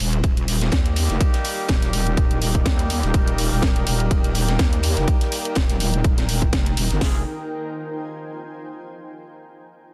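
Dense, heavily limited and dry, this bouncy, aggressive bass house cut is driven by a heavy, saturated wobble bass pumping beneath two layered, overdriven electronic house kits with a punchy kick and cracking snare, while a very quiet damped 70s acoustic kit with dark cymbals sits underneath, bright close-miked horn stabs carry a filter sweep and dub echo, and a cloudy, evolving granular pad with its own reverb carries on alone after 7.2 s until 8.9 s.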